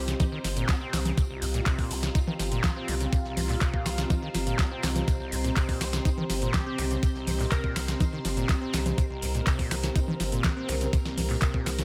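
A raw, driving acid house excerpt at 123 BPM in C minor, built on a thumpy, up-front electronic kick and a booming analog drum machine with crisp snare, metallic hats, handclaps, snaps, congas and cabasa, a very quiet dry snare and tambourine, and a squelchy resonant sawtooth acid riff with overdrive and delay. A deep saturated sub bass, lush phased string-machine chords and a dark, lo-fi warbling pad all pump against the kick over a held C minor chord, while a glassy wavetable pluck sits in the background at the start and again from 6.5 to 8.2 seconds.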